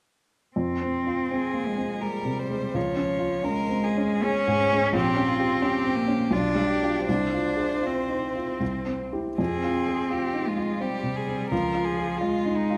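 A focused, close violin carries the yearning melody from 1.3 seconds, its vibrato singing over a smooth, even cello second line and a dark, mellow baby grand piano that both begin at 0.6 seconds. This elegiac, rubato classical fragment for piano trio in 3/4 unfolds as a slow romantic movement. The intimate piano, with audible action noise and short sustain, sits up front beside the rich bowed cello, all framed by a moderate recital hall reverb.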